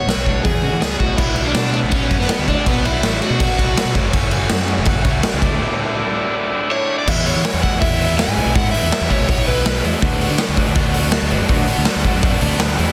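Indie rock with a jangly, upbeat drive, this excerpt rides on a double-tracked, bright garage guitar riff, a growling overdriven fingered bass and a gritty, up-front drum kit whose punchy kick and saturated snare sit in a pumping stone room. A picked, overdriven lead guitar with plate reverb and analog delay carries the melody in two stretches, from the start and again from 6.7 seconds. Between 4.1 and 7.1 seconds, a reedy vintage combo organ with light vibrato holds sustained chords in the background, all within a dense, heavily limited modern master.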